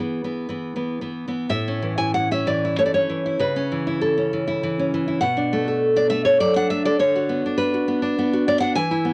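Sunny and warm, this romantic piece for solo classical guitar moves in a rubato 3/4 between 78 and 105 BPM in A major, cut from a longer work. The fingerpicked nylon-string guitar sits up front with a full-bodied tone, fresh strings and audible finger squeak, ranging from A2 to G#5. A brief opening on E gives way at 1.5 s to a longer passage moving through A, A/C#, Bm7 and Bm/D, all within light reverb and a homemade cassette sound carrying a faint mains hum.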